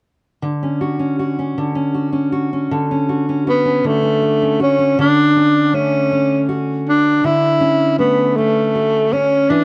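A swaying, heartfelt pop excerpt in 6/8 and D major, moving at a slow 53 beats per minute counted in dotted quarters with a straight feel. A fingerpicked steel-string acoustic guitar opens at 0.4 seconds on a Dmaj7 chord, its up-front sound carrying an auditorium quality and audible finger squeaks as it supplies the accompaniment. At 3.5 seconds a breathy tenor saxophone enters with the melody, its whispered, intimate tone featuring soft attacks, scooped notes, vibrato and a smooth top in a solo jazz style. The saxophone sits slightly above the guitar in level, and both stay up front. Light reverb surrounds the pair, while the whole recording has the worn, warbly pitch drift of an old cassette tape as the music passes from its opening section into a second one at 5.0 seconds.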